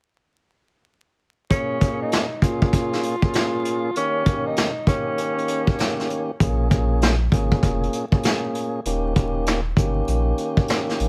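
Vinyl crackle and light reverb frame this gritty, moody boom-bap hip-hop excerpt in Bb dorian at 98 BPM, swinging over a Bbm7 to Eb7 vamp. A vintage brush drum kit sits up front with a tight kick, a medium-tuned snare and a rolled-off top, while a lightly overdriven tonewheel organ with key click, vibrato and a stopped rotary speaker carries the full accompaniment. From 1.5 to 5.9 seconds a breathy, whispered tenor saxophone plays an intimate subtone melody with scooped notes and digital delay, and at 6.4 seconds a thick, saturated sub bass enters.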